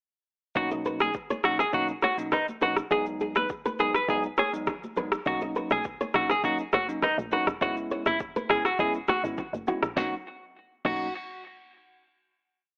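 Afrobeats at 102 BPM in B major with a breezy, sunny mood, where a twangy, up-front clean electric guitar carries a syncopated hook with digital delay over bell-like tine electric piano chords, an overdriven, electronic drum kit with deep kick, sharp snare, rim clicks and shaker, very quiet high-tuned congas and a fingerpicked flamenco guitar riff, before a woody, bouncy log drum bass joins at 5.3 s beneath the Bmaj7 and F#7sus4 changes, all filtered through a telephone-like sound and light reverb until a final Bmaj7 chord at 10.0 s.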